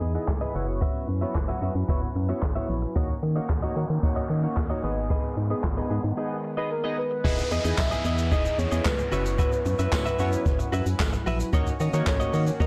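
Dance-pop at 112 BPM with a driving, bittersweet mood, cut from a longer piece, moving through Emaj7, F#7sus4, D#m7 and G#m over a boomy, brushed jazz drum kit with handclaps, shaker and a soft-clipped snare, a hollow, organ-like FM bass that pumps with the sidechain, and a clean, direct-recorded electric guitar riff with subtle chorus. A shimmering pulse-width pad sits in the background under glossy, bright retro synth keys, both pumping, while a noise sweep and downlifter enter at 3.6 seconds and a round, octave-layered synth lead with vibrato, chorus, phaser and digital delay carries the melody from 6.7 seconds, joined by a very quiet, jingly tambourine. The whole mix sounds blown-out and overdriven, low-pass filtered and set in a small room.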